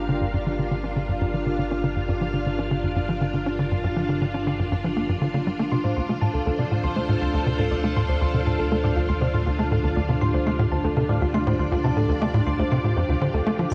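A straight, steady pulse in four drives this cosmic, hypnotic excerpt of ambient sequencer space music, where a tight, punchy, nasal sequencer bass riff with a filter sweep and analog delay churns beneath lush, vintage string-machine chords and a warbling analog drone, joined at 5.7 seconds by round, tine-like thumb-piano-style synth arpeggios, all bathed in a huge ambient reverb with a cassette-tape character.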